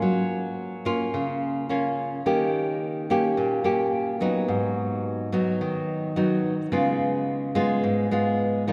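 A straight, even 4/4 bossa nova pulse carries this romantic, sunny fragment of a longer piece, moving through F#maj7, D#7, G#m7 and C#7. A solo nylon-string guitar, dark and up front, is fingerpicked in a classical manner, with small finger squeaks audible on the strings. It sits in a lingering church reverb that lets each chord ring out into the large hall.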